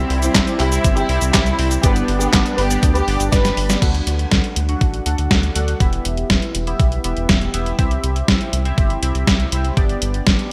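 A straight 4/4 pulse at 121 BPM drives this melodramatic, nostalgic italo disco passage, cut from a longer piece. A thumpy, tape-warm electronic kick with small room reverb anchors the groove. An up-front, detuned 8-bit drum machine adds cabasa, crash cymbal, handclaps, hi-hat and a medium-tuned snare through gated reverb, and plays a drum fill from 3.3 to 3.8 seconds. Beneath it all sits a round, deep and dark analog bass, while glossy, retro polysynth stabs carry vintage 12-bit sampler grit, chorus and digital delay. Until about 3.8 seconds, a lush, close violin section sings the melody with vibrato and delay over a smooth, detuned pad in the background, before the bass, stabs and drums carry on through D, Em, C and G. Light reverb and bright 1980s-style digital production give the whole a polished retro sheen.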